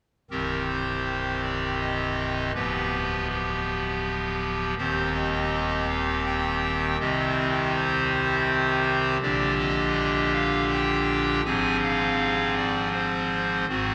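Solemn and grave, this classical chorale-style excerpt for pipe organ moves in 3/4 at 81 BPM in C minor, cut from a longer piece. The organ plays alone from 0.3 to 13.9 seconds on a hollow clarinet reed stop with baroque voicing, sitting up front and spanning from C1 to Ab5 as the chords pass through Cm, G7/D, Cm/Eb, Gm/Bb and Fm/Ab. A drenched cathedral reverb with a 5.7-second decay surrounds the organ.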